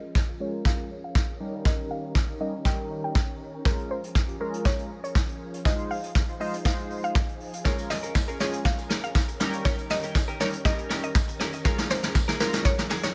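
Dance-pop at 120 BPM in Bb dorian, this energetic yet bittersweet excerpt builds steadily over its 13 seconds, cut from a longer piece, with a filter sweep and drum fill running throughout. A woody, round synth pluck with a mallet-like percussive bite carries the melody, its chorus and digital delay adding shimmer, while a vintage organ-like string ensemble holds soft, evolving sustained chords in the background with a pumping, sidechained breath. The brush drum kit sits up front, acoustic and mid-forward with a punchy kick, a medium-tuned snare, hi-hat and shaker, its top gently rolled off, and glossy retro synth keys built from pulse and sawtooth waves add bright, decaying accompaniment that also pumps against the beat. At 7.6 seconds a clean, direct-recorded electric guitar slips in behind with a compressed, picked riff bathed in lush chorus, joined at 7.7 seconds by a very quiet, jingly tambourine. 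The harmony circles through Bbm7, Eb7 and Fm7 inside a small room ambience.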